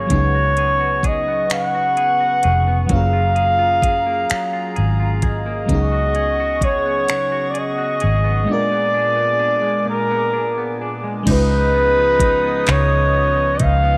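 Late-night and sultry, this slow six-eight R&B excerpt sets a warm, roomy flugelhorn melody with scooped notes over a clean, compressed semi-hollow guitar line, a lush, dreamy chorused FM electric piano, a dark, foam-muted fingered bass and a knocking electronic drum kit with metallic hats, finger snaps, handclaps and crash cymbal, beneath a hollow, flute-like pad and light reverb, until a clear vintage horn section adds background stabs at 11.3 seconds.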